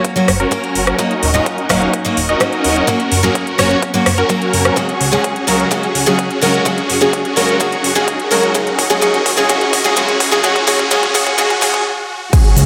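Triumphant and uplifting, this festival progressive house passage moves at 127 BPM in a straight 4/4 in F# major, cycling through F#, D#m7 and C#sus4 as a single long build-up. Up front, huge, detuned supersaw chords play the riff with phaser, 12-bit sampler grit, tape echo and sidechain pumping, while a filter sweeps across them and across a punchy, detuned unison pluck that spins arpeggios in the background. A bright picked steel-string acoustic guitar sits forward in the accompaniment with its own tape echo and pumping until 11.8 seconds, and a fat, wave-folded analog bass pumps underneath as a very quiet, biting symphonic string section holds sustained chords with vibrato. A punchy electronic kick stays in the background beside an overdriven house kit of metallic hi-hats, rim click, shaker and crash, re-recorded in a large room, and a drum fill arrives from 4.8 seconds before everything halts at 11.9 seconds. 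A faint riser leads to an impact at 12.3 seconds, and the whole mix is bathed in a lush hall reverb.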